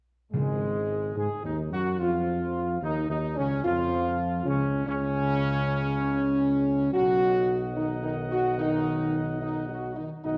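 A triumphant, majestic classical brass passage, cut from a longer piece, opens at 0.3 s with the full ensemble and a brief timpani figure on Db3, played with medium mallets on plastic heads, which falls away by 1.5 s. A trumpet section carries the melody with a dark tone, light vibrato and a smooth top. Beneath it, a mellow French horn section sits up front with sustained chords, while a trombone section, also touched with light vibrato, holds chords from a more distant, roomy place in the background. A tuba with a soft attack anchors the bass in a steady straight metre. The harmony rests on a Dbadd9 over Ab before moving to Cb at 6.9 s, all set in a moderate scoring-stage reverb with a warm production and a faint mains hum.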